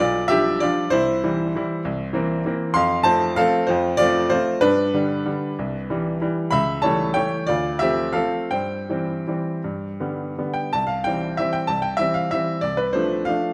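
Playful and sparkling, this short classical piano waltz in C major moves in 3/4 with a rubato feel, its tempo flexing between 156 and 207 BPM. A single clear upright piano carries the whole piece, sitting up front with a woody, natural tone and short sustain, ranging from B1 up to C6. The harmony opens on G7/B before settling onto C, then wanders through C7, F and G, with a colorful A7/C# leading to Dm7 and a return through C/G and G. At 10.7 seconds a new section begins, grounded on C before shifting to Dm7/C at 12.6 seconds as this fragment of a longer piece breaks off. A moderate recital hall reverb gives the instrument a natural sense of space around its clear tone. The tuning sits slightly high, at A4 = 441 Hz.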